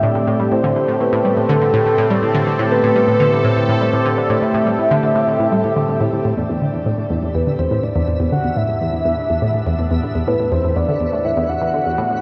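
Hypnotic and expansive, this excerpt of ambient, sequencer-driven space music in E minor moves at 123 BPM in a straight 4/4, with a round analog pluck riff low down, a soft octave-layered synth lead singing a dark melody with vibrato, and a bright, resonant sweeping pad holding chords from Am7 to Em7 at 6.4 seconds, all soaked in chorus and shimmer reverb within a cathedral-like space, while a faint, sparkling granular texture joins at 7.1 seconds.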